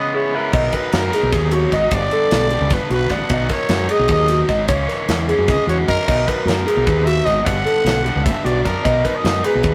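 A rough rehearsal-room recording with moderate stone-room reverb carries this wistful, intricate math rock and midwest emo excerpt in 7/8 at 303 BPM in B major, where a raspy, growling trumpet sings the melody over a bright, double-tracked overdriven stack guitar riff, dark fingered arpeggios from a mellow electric guitar, a punchy, up-front overdriven bass and a tight acoustic drum kit with crash, ride, snare and kick that both join at 0.5 seconds, while a twangy clean guitar adds accompaniment only until 1.9 seconds as the chords cycle between C#m7, C#m, B6 and Gmaj7.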